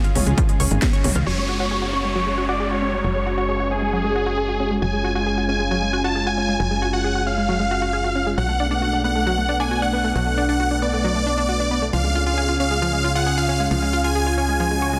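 A dense, heavily limited mix bathed in a huge ambient reverb carries this soaring, emotional uplifting trance excerpt at 135 BPM in F# harmonic minor, where a lush, detuned unison pad and a round analog pluck playing arpeggios pump with sidechain from the first moment, joined by a tight, sawtooth sequencer bass. A brief burst of tape-warm techno drum kit with a cracking snare, together with a punchy electronic kick, opens the piece before a euphoric supersaw lead with phaser and delay takes the melody at 1.3 s, alongside an electronic downlifter and swell. From there, filter sweeps move across the lead, pluck and pad as the chords move from F#sus2 to Bm7 and on to C#.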